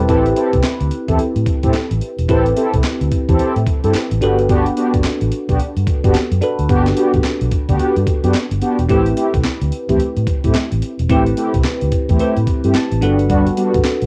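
A swung sixteenth-note groove at 109 BPM in 4/4 drives this slick, punchy new jack swing excerpt in A dorian, tuned slightly flat of standard pitch. Up front, a compressed, gritty sampler-style breakbeat kit of thumpy kick, medium-tuned snare, hi-hat and handclaps carries a tape-warm character, while a dark, foam-muted fingered electric bass sits round and amped beneath it. A bell-like tine electric piano comps brightly through its built-in speakers with phaser and cassette coloring, adding a short fill from 12.5 to 13.3 seconds. Mellow synth brass stabs built from detuned sawtooth waves, with chorus, vibrato and a filter sweep, land with a fast attack and sustained, brassy body. The harmony rocks between Am7 and Gmaj7 in a dry home cassette recording.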